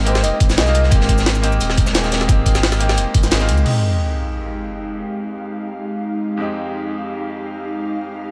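Soulful and melancholic, this liquid drum and bass excerpt at 175 BPM in F minor opens on a drop where a bright grand piano with dub echo and audible action noise plays over an ethereal pad pumping with sidechain, a round, up-front sine sub bass, a fleeting breathy flute-like lead with vibrato in the background, a knocking electronic kick, a saturated breakbeat kit with high-passed hats, and a pitched-up, gritty jungle sampler kit with a high-tuned snare, before an accent at 3.3 seconds and an electronic sub drop at 3.7 seconds move the harmony from Abmaj9 to Fm9, leaving piano and pad to ring out until 8.3 seconds.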